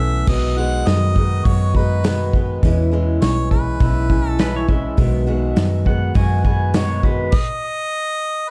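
A clear harmonica with tape echo carries the melody over woody, boxy picked acoustic guitar, a twangy, slightly broken-up electric guitar riff and a round, dark hollow-body bass, joined at 0.3 seconds by an up-front unplugged drum kit played with bundle sticks in this nostalgic, jangly folk and heartland rock excerpt at 102 BPM in 4/4, as a clean pedal steel with volume swells enters at 4.4 seconds, a very quiet flute-like tonewheel organ with key click and slow rotary speaker adds sustained chords, and the band stops at 7.3 seconds, the drums following at 7.5 seconds, to leave the harmonica alone in a small, dark room.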